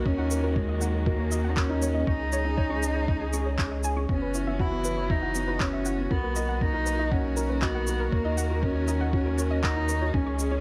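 A dark, woody cello carries an up-front melody in this intimate, cinematic piano and strings electronica, over a felt-muted upright piano riff touched with tape echo, distant bowed string chords with expressive vibrato, a deep sine sub bass with sidechain pumping, gentle background pluck arpeggios with subtle chorus and cassette tape colour, and a muffled, thumpy kick beside tape-warm electronic shaker and handclaps, all set in light reverb.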